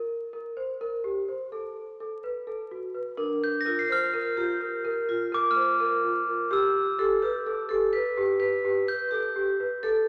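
Hopeful and shimmering, this excerpt of contemporary chamber music moves in 7/8 at 252 BPM in eighths, opening with a large celesta playing sweet, delicate, up-front arpeggios over chords from Gmadd11 to F#madd11, before a metallic vibraphone with medium hard mallets and its motor off adds an airy second line at 3.2 seconds and a ringing, bell-like glockenspiel with soft plastic mallets brings a high texture at 3.4 seconds as the harmony moves through Bb to G, all set in a recital hall's wet reverb with a vinyl crackle.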